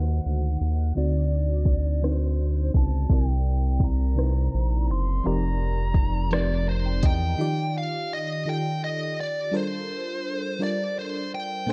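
A dreamy, chorused FM electric piano with a soft pad layer and tremolo opens this slow, sensual 6/8 R&B excerpt at 56 BPM, joined from the start by a deep, round analog bass up front and a bluesy, overdriven lead guitar singing the melody, all under a low-pass filter sweep through the first 7.4 seconds. A smooth, tape-toned drum kit with soft kick, hi-hat and rim click enters at 0.6 seconds, and an electric piano fill leads into a second section at 7.4 seconds, where bass and drums drop away to leave the lush keys and distorted guitar over chords moving from Ebmaj7 to Gm11. The whole is set in a digital ambience.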